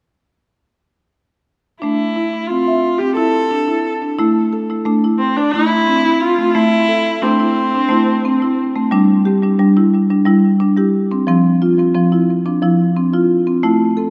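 Hypnotic and meditative, this world-music excerpt in A minor moves in a straight 7/8 at 178 BPM counted in eighths, as an up-front, woody rosewood marimba played with medium mallets spins delayed arpeggios from 1.8 s to 14.1 s while a single smooth, even, warm bowed viola with vibrato sings a delayed melody until 8.6 s, the harmony shifting from Am to G5 and F5 inside a wet concert-hall reverb.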